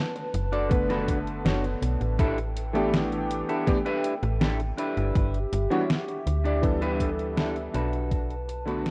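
Woozy and melancholic, this vaporwave fragment drifts on a dark, detuned tape-like pad beneath a clean, hollow-bodied electric guitar riff with subtle chorus and tape echo, a gritty 8-bit drum machine on hi-hat and snare, a thumpy electronic kick, a snappy, metallic FM slap bass and a chorused electric grand piano with clangy lows, the whole mix steeped in worn cassette warble before fading out from 6.1 seconds.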